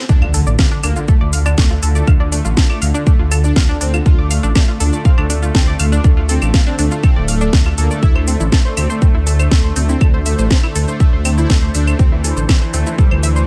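Dry and punchy, with little reverb, this driving, cinematic melodic techno excerpt in D minor at 121 BPM lands straight on a drop, where a very quiet electronic impact marks the first 2.1 seconds while a punchy, tape-warm kick sits up front beside a deep, rumbling detuned saw bass. A house kit with cracking snare, metallic hats, claves and shaker pumps to the sidechain, as do a tight sequenced synth playing filter-plucked arpeggios with chorus and digital delay, a smooth supersaw melody colored by phaser and tape echo, and a mellow analog pad holding sustained chords in the background. The harmony rests on Dm before moving to Am at 8.0 seconds.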